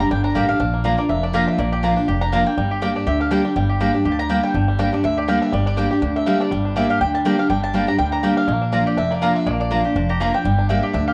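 Driving and lonesome, this swung bluegrass passage in 4/4 is a short cut from a longer piece, moving between G minor and B-flat chords across two passes of the same section. A twangy, percussive banjo played with fingerpicks carries a mellow melody, set in plate reverb, while a picked mandolin with a woody double-string tone plays the melody higher up. A second mandolin, round and picked, adds stabs from 0.3 to 10.8 seconds through a tape echo. Up front, a bright, full-bodied dreadnought guitar holds the accompaniment, and a thumpy pizzicato upright bass with steel strings anchors the bottom. The recording sits in a small room and carries the worn, warbling pitch drift of old cassette tape.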